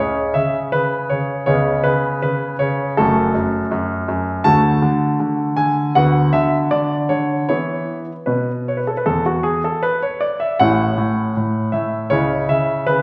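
The rhythm moves in 4/4 at 79 BPM, stretched and pulled by a rubato feel that gives this classical-period piano sonatina a playful, cheerful air. A single bright concert grand carries the whole passage alone from 0.0 to 13.0 s, ranging from a deep F#1 in the bass up to A5, with a brilliant, polished tone and a short sustain that keeps each note crisp and present. The harmony opens on a lone C#5 before settling into F#m at 3.0 s, then moves through D, Bm/D and E5 toward A at 10.6 s and a turn to C#m. The instrument, tuned to A4 = 441 Hz, sits in a wet recital hall whose 1.4-second reverb blooms around it, as though heard from further back in the room. This short passage is cut from a longer piece.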